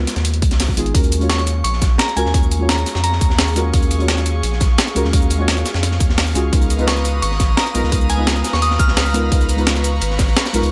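A straight 4/4 groove at 172 BPM drives this melancholic, dreamy liquid drum and bass excerpt in Eb minor, pairing a punchy, layered electronic kick with an up-front, compressed sampler-style breakbeat kit of hi-hat, shaker and snare and a dark, high-passed acoustic breakbeat kit in the background, while a thick, saturated sub bass anchors the low end, a soft, warbling chord stab with chorus and dub echo moves between Db13 and Ebm11, an airy, breathy pad with chorus enters at 0.9 seconds, and a crystalline FM bell with chorus and digital delay carries the melody from 1.3 seconds and again from 6.9 seconds, all set in a lightly reverberant space.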